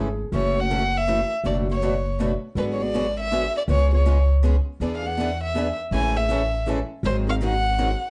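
Two bright, picked acoustic guitars, one a parlour-style steel-string and the other a swing-style instrument, open this charming jazz manouche excerpt alongside a woody, thumpy pizzicato upright bass on gut strings, swinging at 161 BPM in 3/4 and F# minor. At 0.3 s a dark, intimate violin comes in up front, bowed sul tasto with a soft attack, light vibrato and an airy tone, wrapped in plate reverb over chords moving from F#m7 through G#m7b5 and C#7 to Amaj7 and G#7. The performance sits in a moderate studio room with a warm production.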